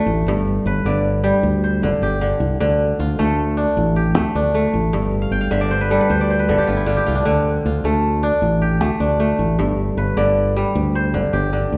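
Set in a flowing 12/8 at 103 BPM, this reflective excerpt of West African string music pairs an up-front, ringing, fingerpicked kora weaving crisp arpeggios (with a fill from 5.2 to 7.3 seconds) over a dark, round fingered electric bass, moving between G and Dm in a wet recital-hall reverb.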